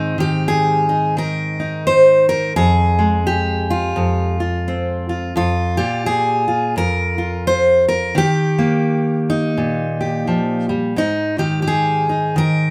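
Folk fingerstyle piece for a lone fingerpicked steel-string acoustic guitar, hopeful and nostalgic, moving at an unhurried pace with a gentle swing on the eighth notes and tuned slightly above standard pitch. The jumbo guitar sounds bright and full-bodied, sitting up front with audible finger squeak, and spans from its low bass strings up into the upper register through a moderate studio reverb. Taken from a longer piece, it moves through Abadd9, Fm, Bb5/F and Eb before settling on Absus2 at 11.0 seconds.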